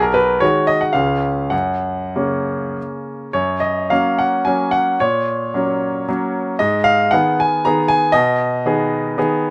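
A bright grand piano carries this short romantic classical piece alone, a triple-time dance in 3/4 whose dotted rhythms give it a capricious lilt under a wistful surface. The tempo breathes freely with rubato, moving between 92 and 126 BPM, and the music sits in F# major, ranging from a low B1 up to A#5. The opening passage drifts from G#m7/B through C# to a home chord of F# by 1.5 seconds, and a second section begins at 3.3 seconds, leaning on F#/A# before settling into G#m and closing on G#m/B at 8.1 seconds. The piano tone is brilliant and polished, placed up front in an intimate, present sound where the action noise of the instrument can be heard. A light reverb adds a little air, and the passage is cut from a longer piece.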